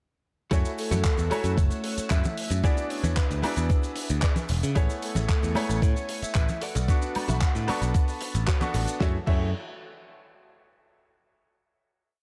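From 0.5 s, this sensual, groovy nu-disco piece opens straight into its drop. A thumpy, sampler-style electronic kick drives a four-on-the-floor pulse up front, beneath a growly, punchy picked electric bass that plays a funky syncopated line with sidechain pumping. A damped 70s drum kit adds a dry disco backbeat with a fat snare, handclaps, hi-hat, shaker, woodblock and dark crash cymbal, while congas, bongos and egg shaker sit close in the background. A brilliant baby grand piano holds rootless chords with syncopated pushes, its action noise audible, and a lush, warbling unison pad sustains detuned vintage chords; both pump against the kick. In the background, a clean, compressed direct-recorded electric guitar picks a funk chord riff through ensemble chorus, and from 0.8 s a soft, round octave-layered synth lead states call-like motifs coloured by chorus, phaser, vibrato and tape echo. 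The chords cycle through F#m7, E7, Amaj7 and Bm7 before a final F#m7 chord arrives at 9.0 s, all within a dark, warm studio production.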